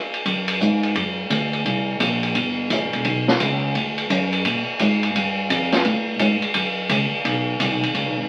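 An up-front swinging drum kit opens this sultry big band swing fragment at 0.1 seconds, its punchy kick, medium-tuned snare, hi-hat and ride cymbal sounding natural in a studio room. A pizzicato upright bass joins at 0.3 seconds with a woody, growly, thumpy tone from its steel strings, running until 8.3 seconds. The whole is wrapped in moderate reverb and the crackle of a very old 78 rpm record, and the excerpt is cut from a longer piece.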